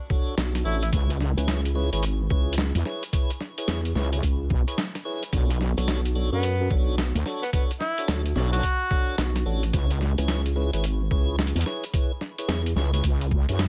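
Heavy, detuned sawtooth wobble bass sits up front beside a nasal, formant-filtered vowel-sweep wobble bass in this playful, funky glitch hop excerpt, driven by a thumpy, pitched-down sampler kick and a gritty boom bap kit of hi-hat and medium-tuned snare, while a piping tonewheel organ stabs through overdrive, slow rotary speaker, 12-bit grit, sidechain pumping and digital delay, and a clear tenor saxophone with light vibrato steps out for a smooth solo from 6.3 to 9.3 seconds over swung Bm9 and C#m7 chords in a dry room.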